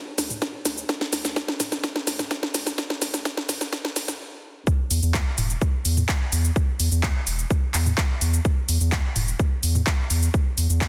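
A melancholic, cinematic melodic techno excerpt opens with a drum fill on an overdriven house kit of handclaps, hi-hat, shaker, toms and a cracking snare, set over a round, dark analog bass with sidechain pumping, and a punchy electronic kick joins at 0.4 s. The build-up halts in a brief stop at 4.2 s before the drop arrives at 4.7 s, with the kit's hats, percussion and toms also pumping against the sidechain. The layered kick and kit were re-recorded in a large room and sit up front beside the deep, sustained bass, all within light reverb and a dense, heavily limited modern master.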